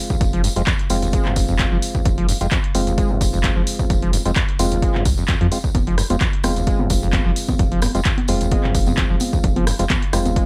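A hollow, organ-like stab opens this hypnotic, gritty acid house excerpt at 0.0 seconds, its percussive, mellow tone coloured by chorus and tape echo as it sits on a single F minor chord at 130 BPM in 4/4 with a light 16th-note swing. Almost at once an overdriven acid bass joins with a squelchy sawtooth riff, resonant and tube-saturated, its filter sweep and decaying notes thickened by subtle chorus and tape echo. An up-front, punchy electronic kick drives the groove with overdrive. Beneath it, a deep, saturated sine sub bass entering at 0.2 seconds pumps with sidechain compression from the background. A tape-toned analog drum machine adds congas, handclaps, hi-hat and rim clicks with a small-room character, while a jingly, close and dry acoustic tambourine sits quietly behind, all set in light reverb until the cut at 10.5 seconds.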